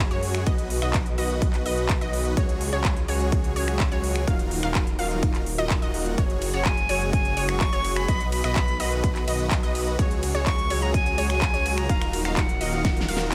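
A barely audible sub drop opens this euphoric, anthemic festival progressive house excerpt, as a dense, compressed supersaw riff, a thick detuned saw bass with chorus and tube saturation, and bright pluck arpeggios with delay all pump against the sidechain, joined at 0.5 s by an overdriven, punchy kick sitting up front. A big-room kit of crisp hats, a huge snare, handclaps, finger snaps and ride cymbal sits in small room ambience alongside a very quiet, lush pad of sustained chords, all under a light reverb. At 6.5 s a breathy, reedy jazz flute takes the melody with vibrato and delay, and a drum fill closes the passage.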